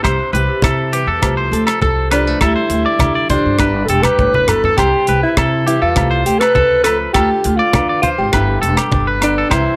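A dark alto saxophone carries the melody from 2.1 seconds, played in a subtone jazz style with scooped notes, sitting up front yet sounding distant and roomy as it solos over this sunny, danceable highlife guitar band excerpt. Beneath it, a bright, clean twangy electric guitar picks compressed arpeggios through an analog delay, while a fingerpicked flamenco guitar adds dark acoustic accompaniment. A woody, growly upright bass plucks the low end on steel strings, anchoring a cycle that moves from C through F over C, D minor add nine and G6. The tight funk drum kit sounds dry, airy and polished, with hi-hat, rim click and a tight kick, and it plays a fill between 4.0 and 4.8 seconds. In the background, ringing agogo bells and thick-skinned, low-tuned congas fill out the percussion, all set in a small room with moderate spring reverb.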